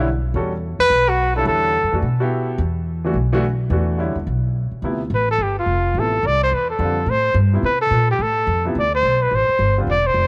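Modal jazz at a brisk 214 BPM with a swung, spiritual and hypnotic feel, where a breathy trumpet with light vibrato floats up front over a woody, thumpy pizzicato upright bass and a clear, intimate upright piano with audible action noise and a cassette-tape tint, moving from E9sus4 to Dm11 as the key shifts from E dorian to D dorian at 4.8 s and the trumpet takes its solo there, all in a small room's light reverb on a home cassette recording cut from a longer piece.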